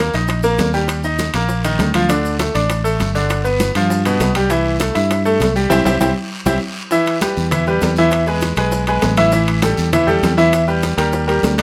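A straight 4/4 salsa groove at 199 BPM drives this festive, joyful excerpt, with a brilliant, polished baby grand piano and a direct, amped fingered electric bass up front, ringing metal-shell timbales, thick-skinned, compressed congas, round, low-tuned bongos, a raspy guiro and grainy, distant maracas behind them in moderate studio reverb, and a band accent at 5.7 seconds with a drum fill carrying into a new section at 6.9 seconds.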